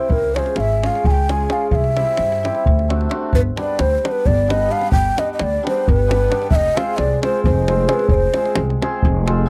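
Balkan folk in the manner of a wedding band, this restless, fiery 7/8 fragment puts a breathy, hollow ney up front on the melody over a bright, shimmering hammered dulcimer, a woody, thumpy pizzicato upright bass and a tight davul, all captured in a dry, close 1970s-style studio sound.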